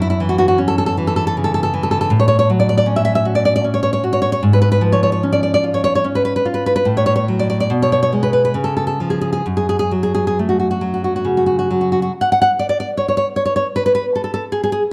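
A fingerpicked nylon-string classical guitar, warm and up front, carries this nostalgic, romantic solo passage cut from a longer piece, flowing in a rubato triple metre across a range from low bass to high treble, its harmony resting on a minor chord at 9.5 seconds before giving way to a brief unharmonized phrase from 12.1 seconds, all framed by light reverb and a dark production.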